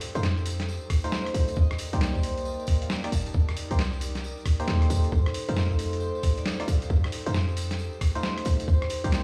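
A gritty, thumpy, pitched-down kick sits up front alongside a punchy, tight 808-style bass in this moody, bouncy two-step garage excerpt at 135 BPM, swung on the sixteenths and moving between F7 and Cm7. A fingerpicked concert harp rings out a mellow melody with digital delay over an airy, breathy pad that pumps softly in the background, while a hollow, percussive organ stab with chorus and delay enters at 0.2 seconds. A compressed sampler-style kit of hi-hat, rim click and medium-tuned snare, plus a jingly tambourine, fills out the groove in a stone-room reverb as if played on a big sound system in a bare room.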